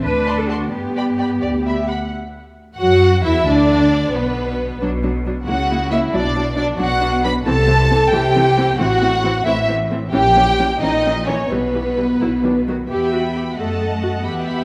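In a straight 6/8 pulse of 89 BPM counted in dotted quarters, this graceful, cheerful E minor string-orchestra movement in classical-period style is cut from a longer piece, with focused, close violas and distant, even cellos opening over warm, lush double basses before the violins enter at 0.3 s, the firsts carrying an expressive, up-front melody with soft attack and vibrato while the seconds add a smooth-topped second line, all set in a wet concert hall reverb.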